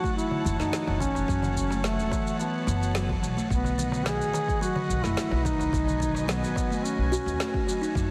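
Overdriven electronic kick, shaker and woody snare set a straight 4/4 groove, joined by a very quiet clay-shelled darbuka, in this short, mystical organic downtempo cut, where a mellow, up-front duduk sings a soft-edged folk melody with vibrato and delay over buzzing, ringing kalimba arpeggios with their own delay, intimate sul tasto chamber strings pumping under sidechain and a thumpy, tube-saturated pizzicato upright bass, the harmony shifting from F#m7 to B inside a lush hall reverb and a heavily compressed radio sound.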